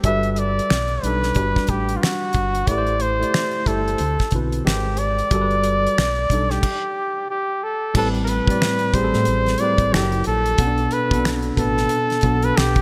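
A bright, 1980s-style digital production bathed in lush hall reverb frames this introspective, late-night neo-soul and R&B piece at 91 BPM, swung on the sixteenths in A dorian with tuning set to A4 = 435 Hz. A worn, slightly out-of-tune tine electric piano with light overdrive provides accompaniment through its built-in speakers, a round, dark fingered electric bass sits deep underneath, and a dry, damped 70s drum kit plays up front with a fat snare, tight kick, dark cymbals, hi-hat, crash and finger snaps. Entering at 0.1 s, a clear, breathy flugelhorn takes the lead with a soft attack and light vibrato over lush Gmaj9 and B7alt harmony, and the band halts at 6.6 s before resuming on Am9 at 7.9 s.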